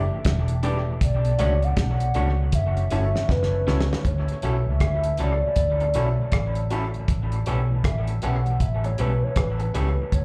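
Lovers rock reggae at 79 BPM in 4/4 with a swung sixteenth-note feel, this bittersweet, longing passage is cut from a longer piece and moves through A7sus4, Bm9 and F#m7 before settling on Dmaj9 at 4.0 seconds and A9 at 7.1 seconds. A hollow, woody clarinet-like synth lead carries the melody between B4 and F#5, soft-edged and sustained with vibrato, colored by chorus, tape echo and slapback echo. Underneath, a dark, foam-muted fingered electric bass sits round and punchy up front, while a cloth-damped drum kit with a fat snare, tight kick, rim clicks and hi-hat thuds along with dub echo and plays a fill from 3.3 to 4.0 seconds. An electric guitar through a small old amp adds twangy, slightly broken-up stabs treated with dub and slapback echo. A glassy, bell-like FM electric piano with chorus and phaser glimmers in the background, and a very quiet tonewheel organ with slow rotary speaker fills out the lower harmony. 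The whole band comes across as a live gig heard through a venue's PA, with a touch of club reverb around the otherwise dry sound.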